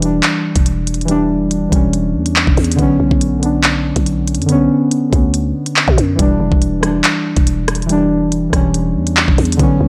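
Muted, felt-like synth keys with a dark, warbling chorus tone carry this menacing drill excerpt at 141 BPM in a half-time feel, moving through Em7, Bmadd9 and back to Em7 over a growling, buzzy 808-style bass and an up-front electronic drum kit of knocking kick, crisp hi-hats, handclaps and rim clicks roughened by vintage 12-bit sampler grit, the whole set in a dry, close space.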